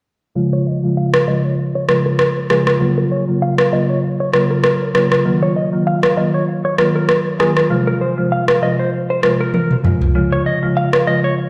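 A buzzing, woody marimba played with medium mallets sits up front in this breezy, romantic afrobeats excerpt at 98 BPM in Db major, joined at 0.5 s by a clean, direct-recorded electric guitar riff with tape echo and a low-pass filter, while an electronic, produced afro-pop drum kit with rim clicks and toms enters at 1.1 s and plays a fill at 9.5 s, all moving through Db, Gbmaj7/Db, Ebmadd9 and Fm under a filter sweep, a plate reverb and a stony, bare-room sound system ambience.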